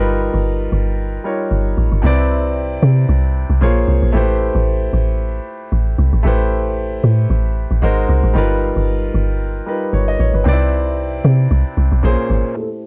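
This amapiano excerpt sits at 114 BPM in 4/4 with a 16th-note swing and carries a late-night mood in A minor. A polished baby grand piano plays the accompaniment up front from the start, its clear, long-sustaining chords softened by a low-pass filter and a cassette-tape character as they move through G7alt, Cmaj9, Bbm9, Am9 and G#9. Beneath it, a deep log drum bass hits with a fast attack and a dark, round, percussive body that decays after each note, and it stops at 12.4 seconds. The whole passage plays as a drop, and only at 12.6 seconds does a soft, breathy, flute-like synth lead slip in low in the mix, carrying vibrato, chorus, a low-pass filter and the same tape color. Light reverb and the feel of a home cassette recording give the fragment an intimate, lived-in sound.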